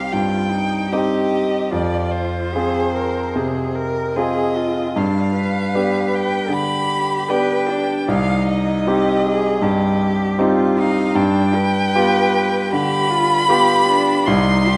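Classical chamber music for piano trio, this slow romantic movement carries an elegiac, melancholic mood, its 4/4 pulse pushed and pulled by a flexible rubato. A single bowed violin sings the melody up front with a focused, vibrato-laden tone, its line sitting between C5 and C6. Beneath it, one bowed cello plays a rich, even second line with its own vibrato, set slightly lower in level than the violin. The concert grand piano supplies the accompaniment and is the most prominent part, sounding bright and brilliant with a deep bass and a vintage character, ranging from C2 to Ab4. The three players are heard together throughout, from 0.0 to 14.8 seconds, bathed in a wet scoring-stage reverb that gives the fragment, cut from a longer piece, a spacious, lingering decay as the harmony moves from Cm through Fm and G, back to Cm, and on to a closing G7.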